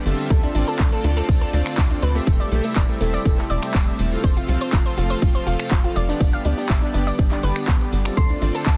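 Bittersweet and dreamy, this progressive house excerpt moves in a straight 4/4 pulse through a Dm7, Am7/E, F and G progression, cut from a longer piece. A punchy, tape-warm electronic kick sits up front, joined by a layered dance kit of finger snaps, handclaps and metallic hats, with a jingly acoustic tambourine further back. Beneath it, a tight sawtooth-and-square sequencer bass drives the low end, its fast-attack filter pluck decaying into a mellow tone. Sustained chords from a smooth, detuned analog pad blend with soft, airy supersaw stabs colored by phaser and delay, while a round, chorused analog pluck spins arpeggios through a filter sweep; all three breathe with sidechain pumping. At 8.2 seconds a crystalline FM bell melody enters high above, shadowed by a gentle, dark wave-folded pluck in the background. The sound is dry and dense, with a heavily limited modern master that carries lossy compression artefacts.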